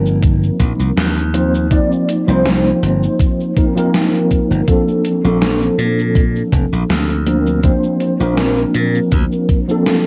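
A mellow tine electric piano sits up front in this faded, dreamy vaporwave excerpt, its clean tone coloured by ensemble chorus, analog delay and cassette tape as it moves from F7sus4 to Bbmaj9 at 4.7 seconds. A bright, punchy slap bass plays alongside it until 9.2 seconds, while a thumpy electronic kick and a sampler-style 80s drum machine with gated reverb on its snare, hi-hat and cabasa add a lightly swung pulse, both drum parts tape-softened and re-recorded in a small room. The whole home cassette recording has a dull, rolled-off top end and a moderate studio reverb.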